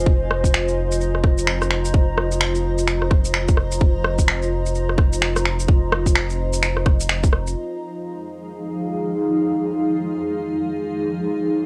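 A ghostly, nocturnal piece of future garage in F minor, running at 128 BPM in 4/4 with a 61% swing on the sixteenths, taken from a longer track. A granular cloud pad carries sustained chords from F3 to Bb5 across the whole clip, its detuned, blurred and evolving tone softened by built-in reverb, sidechain pumping and cassette tape colour. Beneath it, a round sine sub bass holds a deep F1 with sidechain pumping, while a tight, up-front electronic kick and a kit of rim click, shaker and finger snaps, dulled by low-pass filtering and small room ambience, drive the groove. The harmony moves from F7(no3) to Fm7 at 7.6 s, where the bass and percussion fall away and the pad sits alone until 11.7 s. The whole mix has the hazy, intimate feel of a home cassette recording in a modest reverberant space.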